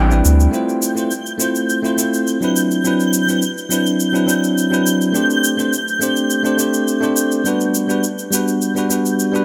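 A barky, bell-like tine electric piano with digital delay opens this blissful sunset chillout excerpt at 104 BPM over a round, deep analog bass that sounds only until 0.5 seconds, while an electronic shaker with gated reverb enters at 0.1 seconds and a twinkling granular texture with an octave-up shimmer and chorus arrives at 0.9 seconds, all bathed in a wet plate reverb with bright 1980s-style digital production as the chords drift from Fmaj7 through Cmaj9#11 and D7sus4 to Gmaj7.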